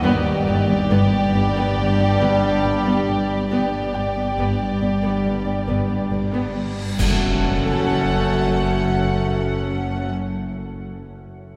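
A ringing, thumb-plucked concert harp riff runs through this ominous, mysterious suspense film cue at 69 BPM in F# phrygian, cut from a longer piece. The harp plays until 7.0 s over intimate sul tasto violin sections carrying the melody and a second line, a viola section, a dark cello section and a pure, floating double bass section, while mellow French horns and vintage-toned trombones hold sustained chords. A deep, rumbling drone sits underneath, a cymbal swell, clash cymbals and concert bass drum arrive at 3.5 s, and a very quiet, brilliant baby grand piano adds texture before a huge reverse cymbal at 6.7 s leads into an impact at 7.0 s as the harmony moves from G to F# minor, all set in the long cathedral reverb of a church or concert hall.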